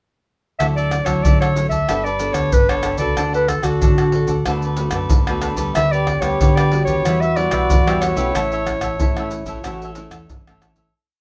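At 0.6 s a sunny, playful samba and choro piece in D major starts up at 93 BPM in a straight 4/4. A warm, smooth-topped clarinet carries the lead from the start, playing a classical-style, motif-based melody in sentence-like phrases, up front over a small-room samba percussion group of deep surdo, pandeiro, shaker and tamborim. The cavaquinho strums crisp sixteenths while the nylon-string guitar fingerpicks a classical samba pattern of thumb bass and syncopated plucked chords. Underneath, a dark, round and punchy fingered electric bass plays a direct, amped samba figure. At 5.8 s a mellow, breathy trombone enters with a jazz-style counter-melody full of vibrato and scooped notes. The harmony moves from Dadd9 and Gadd9 through Bm7/D and Em to a closing A chord, all within a moderate studio reverb, as the piece fades out from 8.3 s to its end at 10.9 s.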